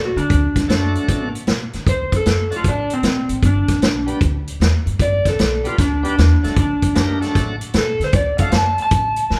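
Electric blues shuffle at 153 BPM in D mixolydian, soulful and swaggering, cut from a longer piece, with a dark, slightly broken-up slide guitar soloing up front across the whole 9.4 seconds over a woody, thumpy pizzicato upright bass, a punchy vintage drum kit entering at 0.2 seconds with hi-hat, kick and snare, and a bright, shouting tonewheel organ with key click and slow rotary speaker sitting low in the mix from 0.7 to 8.5 seconds, the band playing live in one room with moderate large studio reverb as the chords move from D to G and back to D.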